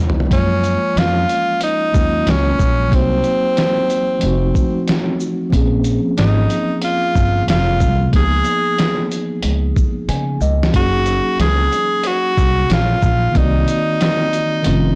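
Blown-out and overdriven with vinyl crackle and light reverb, this cool, nocturnal jazz-hop excerpt sets a bright, forceful tenor saxophone solo up front over a mellow tine electric piano, a woody pizzicato upright bass with tube saturation, and a muffled, compressed sampler-style drum kit with a thumpy kick, shaker and toms, with a drum fill and an electric piano fill arriving around 10 seconds.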